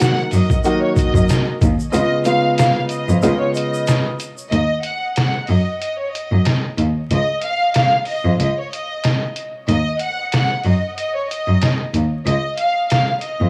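Swung, pitched-down sampler-style drums with a thumpy kick and medium-tuned snare drive this tough, moody boom-bap hip-hop excerpt, where a lush bowed violin section carries the melody through filtering and analog delay, a dark, woody upright piano and a grainy tube shaker in the background drop out early, the kick is muted from 1.9 s until the break at 4.5 s, and a single expressive cello with vibrato and portamento holds the bass beneath light reverb and gritty vinyl crackle.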